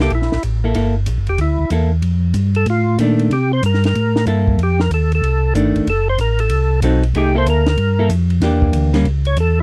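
A thick, lightly overdriven tonewheel organ carries the melody with a percussive attack, key click, chorus vibrato and a slowly turning rotary speaker, soloing across the whole of this bluesy, soulful soul jazz organ trio cut from a longer piece, swung in 4/4. Beneath it, a clean hollow-body electric guitar comps up front through C13, F13, F#dim7 and Em7b5 before a closing Dbm, while a second, mellow and round organ holds down the bass. A compact cocktail kit with a high-tuned snare, punchy kick, hi-hat and ride sits dark and rolled-off in a dry, close 1970s-style studio sound.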